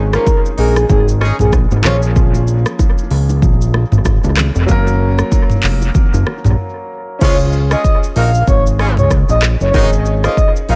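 This afrobeats excerpt moves at 95 BPM in Db major with a breezy, joyful mood and a lightly swung 16th-note feel, set in an echo-heavy digital ambience. An electronic, produced afro-pop drum kit sits up front with a deep kick, crisp hats, handclaps, rim clicks, shaker, toms and crash cymbal, while a fat, saturated analog bass built from detuned sawtooth and square waves carries the low end with a plucky filter and sustained notes. A clear, intimate concert grand piano supplies the accompaniment throughout, its action noise audible and its tone polished. A soft, breathy flute-like synth lead with chorus and vibrato states the melody alongside a pop-style horn section doubled in octaves with light vibrato; both drop out at 2.0 seconds and return at 7.2 seconds, each touched by analog delay. Very quiet bongos and congas, close, dry and ringing, add acoustic colour until 6.4 seconds, just before a short break leads back into the section.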